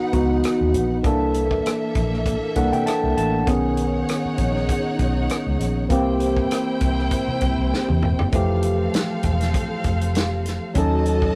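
A rough rehearsal-room recording with warm saturation and a moderate studio reverb frames this 11-second excerpt of lush 1970s-style soul, smooth and cinematic at 99 BPM in 4/4 with a light sixteenth-note swing. A barky tine electric piano sits up front, lightly overdriven through a combo amp with a phaser, carrying the accompaniment and stepping out for a fill from 2.3 to 3.5 seconds. Beneath it, a dark, foam-muted fingered electric bass gives round, punchy low end, while an acoustic soul drum kit with a tight kick, medium-tuned snare, rim clicks, hi-hat and toms sounds roomy and distant yet up front, breaking into a fill at 7.7 seconds. A bowed symphonic string section adds a soft-attack second line with expressive vibrato, sitting low in the balance. The harmony drifts through rich extended chords, from C#m11 to C13, B69, C7 and Fmaj9, settling on D#m7b5 at 10.8 seconds.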